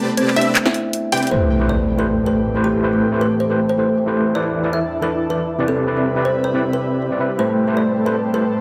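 A huge, detuned supersaw riff dominates this dreamy, emotional future bass excerpt with a half-time swing, as a lush unison pluck arpeggio and fat-snared pop drums with handclaps and hi-hat drive the opening drop until 1.3 seconds, when an electronic impact hits and a gritty overdriven tine electric piano with fast tremolo and a soft, breathy chorused pad enter alongside the woody, ringing kalimba melody heard since 0.2 seconds, set in a moderate digital room reverb with tape echo on the pluck, kalimba and piano.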